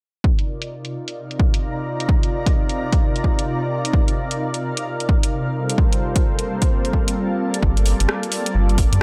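A swung two-step garage groove with a punchy, tape-warm kick up front and a layered kit of filtered hi-hats and rim clicks carries this late-night, bouncy UK garage excerpt, as a detuned sawtooth pad with chorus and 12-bit sampler grit holds Cm11 and then Gm11 chords, a cloudy granular pad with built-in reverb blurs above, both pumping against the kick, and a rubbery, hollow square bass enters at 7.6 seconds in a digital ambience.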